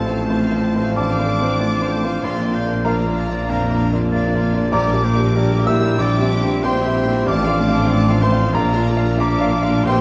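Over uneven, rubato beats in 4/4, this passionate, lyrical classical excerpt sets a clear, intimate grand piano up front carrying the melody, its action noise audible, while a violin section shares the tune in the background and a second, lush violin section, an airy flute group and a solo oboe weave second lines. A very quiet viola section supplies accompaniment, a mellow French horn section and a very quiet trombone section hold sustained chords, and the bass rests on a distant cello section, a dark, very quiet tuba and a focused double bass section. The orchestra sits in a wet, scoring-stage reverb with a layer of vinyl crackle, as the harmony moves through F/A, Bb, Gm/Bb and C7/Bb before returning to F/A and Bb.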